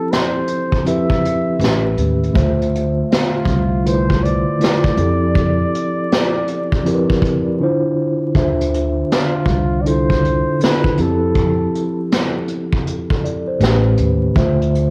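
Recorded at home on cassette with vinyl crackle and a modest studio ambience, this nostalgic, melancholic lo-fi hip hop fragment sets a breathy, lightly vibratoed flugelhorn melody, filtered and trailed by analog delay, over a mellow, up-front tine electric piano, a roomy brush kit whose drums drop out from 7.6 to 8.4 seconds, and a woody, thumpy pizzicato upright bass that joins at 1.6 seconds, with the flugelhorn falling silent at 12.1 seconds.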